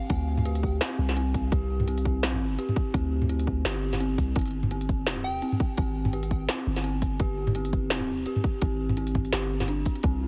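A half-time drum and bass groove at 169 BPM swings its 16ths, driven up front by a hard-clipped electronic kick and an industrial kit of clanging snare, crisp hi-hats and toms, alongside a deep, sine-toned 808-style bass sustained over a Gsus4 chord. Above them, an eerie, inharmonic FM bell warbles through arpeggios with chorus, phaser and tape echo, while a soft, pure bell sounds a single G5 note at 5.2 seconds in the background. The tense, dark excerpt has a dry, heavily compressed radio sound, and a flickering, granular texture surfaces only at 10.2 seconds, just before the cut.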